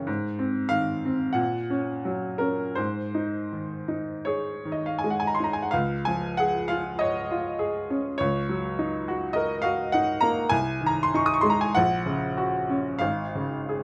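A bright, worn baby grand piano plays alone, up front in a moderate studio reverb, its short-sustained tones carrying a tender, serene romantic nocturne in Db major at a slow, rubato 39-52 BPM, in a brief fragment cut from a longer piece that shifts to a new passage at 5.7 seconds.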